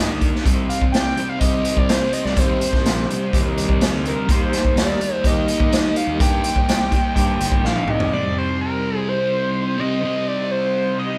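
Recorded live in one room with a moderate large-studio reverb, this mysterious, trippy psychedelic rock passage in C minor moves at 125 BPM in a straight 4/4 over Cm and Eb. A screaming, guitar-like overdriven synth lead carries the melody above a warm, double-tracked fuzz guitar riff with phaser, while a shimmering, warbling string machine holds sustained violin chords in the background. A growly fuzz bass and a raw, punchy garage drum kit with a pumping small-room sound and rolled-off top drive the groove until a drum fill at 7.6 seconds, after which both drop out at 8.1 seconds and the lead, guitar and strings continue over C minor.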